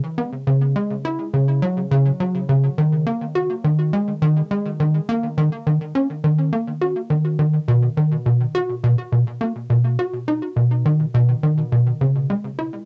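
A tight, punchy sequencer bass of sawtooth and square waves plays alone from 0.2 to 12.8 seconds, its filter-plucked notes ranging from B2 to F#4 with fast attacks and decaying tails, sitting up front and driving this cosmic, expansive ambient excerpt at 104 BPM in straight 4/4, tuned to A4 = 436 Hz, colored by cassette tape and tape echo within a wet booth ambience of a home cassette recording.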